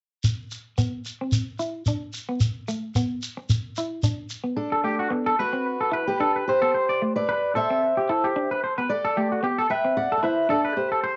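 Muffled, roomy cassette home recording of a carefree highlife guitar band excerpt at 111 BPM in G major, where a grainy shekere opens alone at 0.2 s, a dark semi-hollow electric guitar with lush chorus plays quiet accompaniment underneath, and from 4.6 s an up-front fingerpicked steel-string acoustic guitar carries the melody with audible finger squeak while a clean, compressed, twangy electric guitar adds arpeggios.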